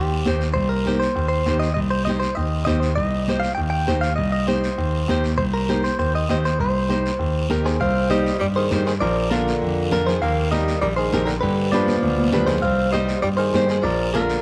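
A twangy, clean electric guitar carries the melody from the start, sitting up front with a touch of spring reverb, while a concert grand piano plays the bass line in its deep low register, intimate and smooth with audible action noise. This is a driving, danceable cumbia in C minor at 199 BPM in a straight 4/4, cut from a longer piece. From 0.3 seconds a dark, fingerpicked flamenco guitar fills in the accompaniment, joined by high-tuned congas struck with hard hands, distant in a large room and kept in the background, and a raspy, band-limited guiro with a vintage edge. At 7.6 seconds a close-miked tenor saxophone enters with a bright, pop-style second line full of vibrato, lifting the second half as the harmony moves from C minor through Bb, Eb and G7 before returning to C minor and then Bb. A drum fill at 11.9 seconds pushes the groove toward the close, and a light reverb ties the ensemble together.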